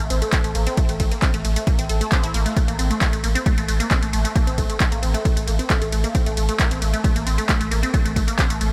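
A light digital reverb adds a touch of ambience to this short cut from a longer driving peak-time techno track, with an intense 134 BPM pulse in straight 4/4, set in A phrygian over a steady A minor chord and tuned to A4 = 436 Hz. An analog drum machine's handclaps, hi-hat and ride cymbal come in from 0.1 seconds, and a punchy electronic kick joins up front at 0.3 seconds, while a thick, overdriven sub bass holds a low A under sidechain pumping and a low-pass filter. On top, a squelchy, detuned blip pluck riffs between A3 and A4, its resonant filter snap colored by ring modulation, phaser, tube saturation, pumping and tape echo.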